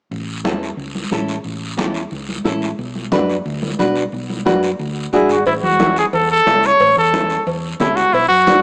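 A small-speaker sound with light reverb frames this sunny, danceable cumbia clip in A major at 179 BPM, where a dark, round hollow-body electric bass, warm high-tuned congas played with soft hands in a distant large room, and a raspy close guiro start together, joined at 0.4 seconds by a full-bodied fingerpicked nylon-string guitar with audible finger squeak over chords moving from A to Bm and back, before a clear, punchy trumpet with vibrato takes the solo melody up front at 5.1 seconds and ringing cowbell and timbales enter in the background at 5.5 seconds.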